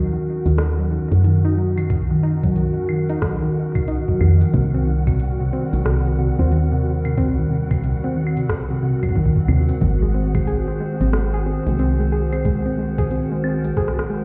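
Muffled as if heard through a wall, with a stone room's reverb, this eerie, cerebral IDM excerpt moves at 91 BPM with a swung 16th feel in Eb dorian, its chords shifting from Ebm7 to Cm7 at 4.5 seconds and to Ab at 9.8 seconds. A warbling, nostalgic lo-fi pad holds detuned chords under a soft, mellow pluck playing chorused, delayed arpeggios, while a woody FM bass sits up front and a grainy, flickering granular texture hovers faintly above. A booming analog drum machine enters at 0.5 seconds with metallic hats, claves and rim clicks through delay, and a gritty, thumpy, pitched-up kick joins at 1.9 seconds.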